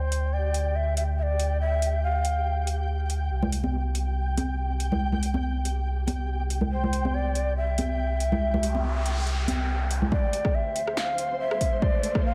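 A breathy, bamboo-toned shakuhachi with dub echo floats over a dark, rumbling detuned saw bass in this meditative deep dubstep excerpt at 141 BPM in D minor, where a grainy, flickering texture, punchy deep house drums with metallic hats, ringing congas from 3.4 seconds, a noise sweep at 8.6 seconds and an overdriven electronic kick at 10.1 seconds build toward a riser amid light reverb and vinyl crackle.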